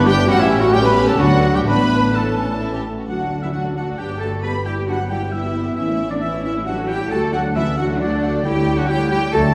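Restless and urgent, this quick classical-period orchestral fragment in 3/4 with a rubato feel sets a lush, expressive violin melody over a clear second violin line, a focused viola part in the background, smooth cellos and up-front double basses, while an airy silver flute, a distant warm oboe and a mellow clarinet add second lines, dark French horns hold sustained chords, and a bassoon accompanies only until 2.8 s, the orchestra heard from further back in a reverberant concert hall.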